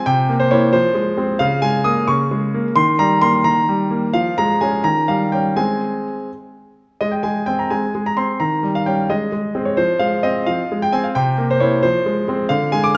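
A graceful, elegant classical-period piano sonatina excerpt in 6/8 with rubato, played by a solo concert grand that sounds clear, smooth and up front with a deep bass and a vintage character, set in a wet recital hall reverb as its chords move through minor and dominant colors before settling home, then return to the opening phrase at 7.0 seconds.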